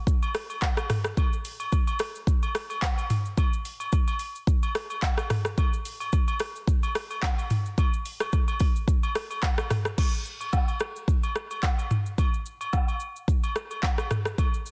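A late-night, soulful amapiano groove, cut from a longer piece, rides a 4/4 pulse with a light swing on the sixteenths. An up-front, electronic afro-pop drum kit carries a deep kick, metallic hi-hats, handclaps, rim clicks, shaker, toms and crash, while agogo bells and woodblock sit distant and acoustic in a large room, joined by egg shaker and group handclap. The opening drop runs until a new section arrives at 10.0 seconds, all inside a digital ambience and a dense, heavily limited modern master.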